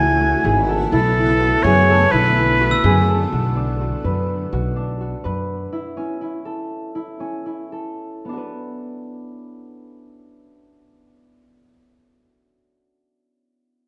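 A wet recital hall reverb surrounds this excerpt of contemporary chamber music, a hypnotic, pensive piece in B dorian that moves in an uneven 5/8 at a straight eighth-note pulse of 218-251 BPM. A smooth-topped oboe with classical vibrato carries the solo melody up front, set over a cloudy, blurred, bright granular pad of detuned, slowly evolving sustained chords with its own built-in reverb. A thumb-plucked concert harp rings out arpeggios, while a woody, growly pizzicato upright bass on steel strings anchors the low end as the harmony moves from C#m7 to Bm7. Near the end of the opening, a glockenspiel struck with brass mallets adds a brief metallic, sparkling bell tone. The oboe falls away at 3.1 seconds and the bass at 5.7 seconds, after which the pulse slows and the harp plays alone until 12.3 seconds, settling back onto Bm.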